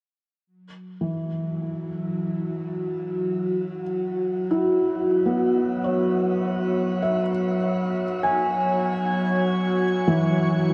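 A felt-muted upright piano, sitting up front, plays soft, intimate arpeggios from E3 to G#5, entering at 1.0 seconds and gradually fading in through this short cut from a longer ambient piece. Its mellow, thick-felt tone is carried by a delay. From 1.4 seconds, an overtone-sweeping drone settles on F#3, blending sawtooth and sine into a resonant, sustained tone with moving overtones, a slow attack and a long release, coloured by chorus and its own reverb. The harmony rests on an F#7 chord with its third omitted, at a relaxed 75 BPM in straight 4/4, tuned to A4 = 436 Hz. A wet shimmer reverb with an 8.5-second decay and a dark production give the whole a serene, melancholic mood.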